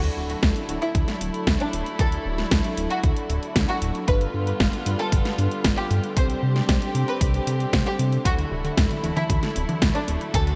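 This playful, romantic italo disco excerpt opens with sustained chamber strings, intimate and bowed with a soft sul tasto tone, alongside mellow, brassy synth stabs that sit in the background with chorus and a gritty vintage sampler character. A dark, glossy chorused synth bass anchors the low end, while an up-front house kit adds congas, hi-hat and a cracking snare, joined by a punchy, tape-warm electronic kick. At 0.8 seconds a close studio violin section takes the melody, reedy and gut-stringed in period style, with light vibrato and a delay trailing each phrase. The harmony moves through Dadd9, G7 and Csus2 in D mixolydian at a straight 115 BPM in 4/4. At 8.3 seconds a lush, detuned unison pluck slips in behind with delayed arpeggios as the chords return to Dadd9. The bright 1980s-style digital production sits in light reverb, and the piece is cut from a longer work.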